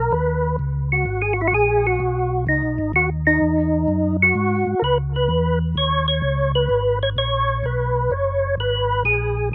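A dry, close sound with little reverb and an open-air feel frames this short cut from a longer soul jazz organ trio piece, swinging at 128 BPM in 4/4 with a late-night, smoky mood in G# minor. A percussive tonewheel organ carries the melody between D#4 and C#5, its round, clean tone marked by third harmonic percussion, chorus vibrato, a slow rotary speaker and a slapback echo, sitting up front in the mix. Beneath it, a mellow tonewheel organ holds down the bass from F#1 to G#2, dark and softer in level, also colored by chorus vibrato and a slow rotary speaker. Both parts play throughout the 9.5 seconds, moving from Bmaj9 to G#m7, then to C#m7 at 4.8 seconds and back to G#m7. The swung eighths and the organs' rounded timbres give the passage a relaxed, smoldering groove.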